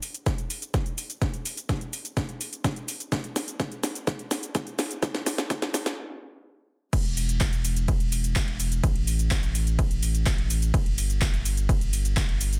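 A dense, heavily limited modern master with light reverb carries this euphoric, powerful stretch of festival progressive house in E minor at 126 BPM, where a house drum kit of cracking snare, metallic hats, handclaps, shaker, ride and crash builds through a fill over a punchy electronic kick, halts at 6.0 seconds, then hits the drop at 6.9 seconds as a deep, thick, saturated sine sub bass enters up front with sidechain pumping.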